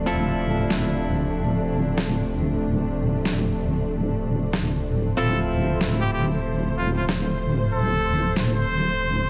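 Swung sixteenths drive this playful, funky glitch hop excerpt over a Dm7 chord, where a heavy, saturated wobble bass sits beneath dark, woody sustained strings moving through a filter sweep, clean hollow-body guitar stabs trail dub echo, a gritty, pitched-down sampler snare enters at 0.7 seconds, and a punchy trumpet with light vibrato carries the melody from 5.2 seconds, amid light small-room reverb and vinyl crackle.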